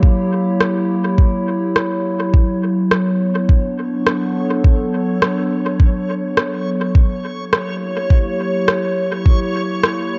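A hazy, echo-heavy mix with a dulled top end carries this meditative ambient dub excerpt at 104 BPM in B minor with lightly swung 16ths, where a warbling, detuned, lo-fi tape-like pad with chorus and reverb holds dark sustained chords moving from F#7b9 to Bm9 and back, over an up-front soft electronic kick and a tape-warm rim click trailing dub echo, while a faint reversed, granular swelling texture enters at 3.3 s with a bright, dreamy glow.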